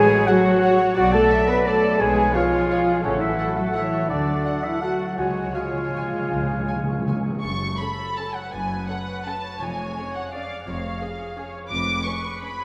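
A dark, bittersweet orchestral ballroom waltz in F# minor opens with a full texture, where muted violins carry a veiled melody in 3/4 at a rubato 150-186 BPM over muted violas, cellos and double basses, with ringing harp arpeggios. Hollow flute, warm oboe, clear clarinet and bassoon add supporting lines alongside a mellow horn section's sustained chords, and round, soft-mallet timpani play a fill from 5.2 to 7.4 seconds. The winds, horns and timpani then fall away, leaving the lush, con sordino strings and harp in a wet scoring-stage reverb for the final stretch of this fragment cut from a longer piece.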